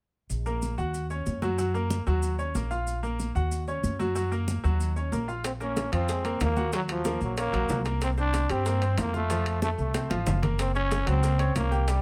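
Closely miked and lightly reverberant, this danceable, passionate salsa excerpt in Bb minor moves at 187 BPM, with a woody, thumpy pizzicato upright bass and a bright, polished baby grand piano up front over congas with a thick, damped skin and grainy, mellow maracas. At 5.4 seconds a raspy, growling trombone solo with vibrato and plate reverb takes the melody, while tight, saturated bongos and ringing metal-shelled timbales join in the background. A drum fill lands at 9.9 seconds as the harmony moves through Bbm7, Ebm7, C5 and F toward Gb.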